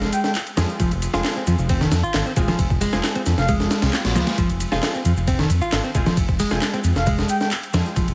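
A gritty, pitched-up sampler-style breakbeat kit with a thumpy kick and high-tuned snare drives this energetic, funky breakbeat excerpt at 134 BPM, sitting up front alongside layered electronic shaker and handclaps and a deep, rumbling detuned saw bass with tube saturation, all in F minor at a slightly flat tuning. A clean, picked electric guitar riff with spring reverb and delay carries the groove, while bold, punchy orchestra-hit-like synth stabs with a moving notch and cassette-tape grit stay in the background. A soft, breathy flute-like lead with chorus and vibrato offers brief phrases near 0.1, 3.4 and 7.0 seconds, a very quiet electronic swell passes in the middle, and the whole mix has a heavily compressed radio sound.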